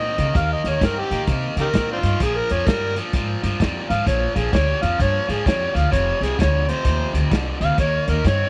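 A small room with light reverb frames this gritty, soulful electric blues shuffle, a short cut from a longer piece at 129 BPM in 4/4 with a swung eighth-note feel, tuned slightly low to A4 = 439 Hz. Up front, an amplified, overdriven harmonica carries a solo from the first moment, its soft attack, scooped notes, light vibrato and tongue slaps giving the jazz-style lines a raspy edge. Beneath it, a bright, picked electric guitar with overdrive plays a low riff, while a woody, growly upright bass, plucked and thumpy, sits close to the front. A muffled, lo-fi soul drum kit with a rolled-off top, a tight kick, a medium-tuned snare and hi-hat comes in at 0.2 s and plays through to 8.4 s. The harmony moves from Eb to Bb5 at 2.2 s, then to F5 and finally Eb7.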